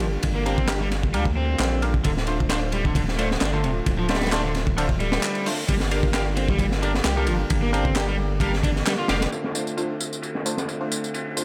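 Funky and swaggering, this breakbeat excerpt in D minor rides a lightly swung 132 BPM groove built on an up-front, gritty acoustic drum kit with a tight kick, high-tuned snare and dark, rolled-off cymbals, with layered electronic handclaps and tambourine joining at 0.7 s. A deep, thick sine sub bass and a picked, hollow-body overdriven guitar riff with vintage sampler grit and digital delay both drop out around 9.1 to 9.3 s. Alongside the drums and claps, a nasal, detuned sawtooth chord stab with phaser, delay and filter sweeps and a fat, percussive tonewheel organ on slow rotary speaker in the background carry the Gm7 and Dm7 changes, as the organ takes its own filter sweep from 9.3 s.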